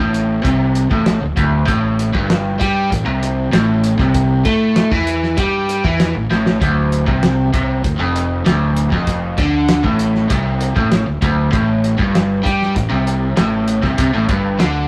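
An up-front, double-tracked overdriven electric guitar carries a bright, picked riff in the low register through this hypnotic, mysterious psychedelic rock excerpt in D minor at 98 BPM, moving through D5, Am7 and Dm chords. Beneath it a growly fuzz bass adds overdriven weight, while a cloth-damped, thuddy drum kit with a fat snare, tight kick and rolled-off top keeps a straight 4/4 pulse, marked by a short fill at 6.3 seconds. Light reverb and tube saturation give the whole a rough rehearsal-room character.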